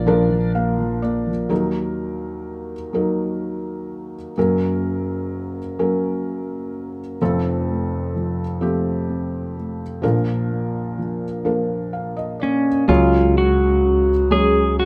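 Acoustic folk-pop ballad in a slow, straight 6/8, intimate and melancholic in mood, cut from a longer piece and played by a small band together in one room with a light reverb. A felt-muted upright piano carries the accompaniment throughout, soft and mellow with audible action noise and a vintage, smooth character, sitting up front. A second felt-muted piano layer adds quieter arpeggios in a narrow middle register, darker and boxy with a thick-felt sound, most noticeably from 7.2 to 13.0 seconds. A round, punchy fretless electric bass frames the passage at its opening and returns at 12.9 seconds. The pedal steel guitar carries the melody in brief, twangy, fingerpicked phrases with slide and volume swells, compressed and up front, appearing at the start and again from 12.4 seconds, shortly before the harmony settles on a suspended chord at 12.9 seconds.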